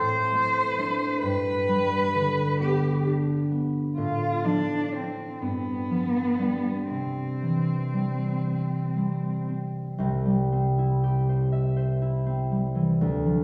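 A single bowed cello, warm and somewhat distant in tone, carries the solemn, yearning melody with expressive vibrato and portamento over a ringing, fingerpicked concert harp in this romantic classical duo. The slow 6/8 pulse, around 38-46 BPM in dotted quarters, moves with rubato through C major harmony, all heard from further back in a wet scoring-stage reverb. The cello falls silent at 9.4 seconds, and the harp continues alone until this cut from a longer piece ends at 13.4 seconds.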